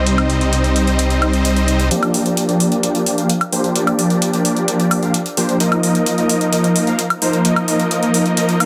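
Euphoric and powerful, this festival progressive house excerpt at 130 BPM opens on huge, lush supersaw chords carrying the riff through a cassette-tape tint, low-pass filtering and delay, over a thick, saturated detuned saw bass with chorus that plays only until 1.9 s. Layered electronic hi-hats and woodblock, with metallic hats re-recorded in a small room, tick along beneath. From 1.9 s a build-up takes hold as a filter sweep works on the supersaw, the harmony moving from C minor through B-flat six to E-flat sus2, all inside a dense, heavily limited modern master with light reverb.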